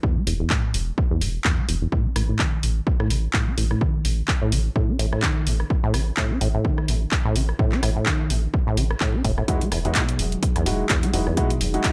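A lightly reverberant mix opens this raw, playful acid house excerpt in E major at 127 BPM with a swung 16th-note feel. A rubbery, resonant sawtooth acid riff with tube saturation, delay and sidechain pumping runs under a filter sweep throughout, over a punchy, tape-warm electronic kick, a round square-and-sine sub bass, and a tape-warm analog drum machine of handclaps, hi-hat and rim click re-recorded in a large room. At 9.5 s a moody, detuned pad with chorus settles into the background on an Emaj9 chord as an intimate grand piano, its action noise audible, adds delayed stabs.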